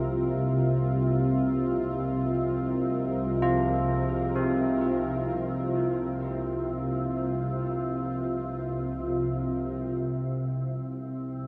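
Drenched in a cavernous, echoing reverb, this ominous dark ambient drone drifts in free time in C minor, cut from a longer piece. A low, warbling organ-like drone with ensemble chorus and a deep, full-bodied analog pad with chorus hold a sustained C minor chord up front, while a filter sweep shapes the drone through the first 10.0 seconds. Bronze carillon bells ring out bright arpeggios through tape echo until 10.0 seconds, when the harmony falls away and the drone and pad sustain alone to 11.5 seconds.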